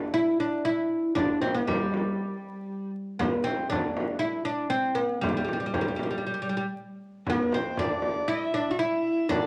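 Stately and passionate, this short cut from a longer piece is an Arabic maqam ensemble performance in G maqam rast, moving at 118 BPM in a straight 4/4. The oud carries the melody from the very start, its plectrum-plucked, fretless double strings sounding woody and up front as it moves between G3 and a quarter-flat F#4. A deep, acoustic frame drum joins at 1.2 seconds, a large, distant presence set in a big room yet still sitting up front. At 7.3 seconds, as the opening section repeats, a single bowed violin adds a second line between a raised Bb4 and E5, earthy and biting with light vibrato and a smooth top. A moderate large-studio reverb surrounds the ensemble, and a layer of vinyl crackle gives the recording an aged surface.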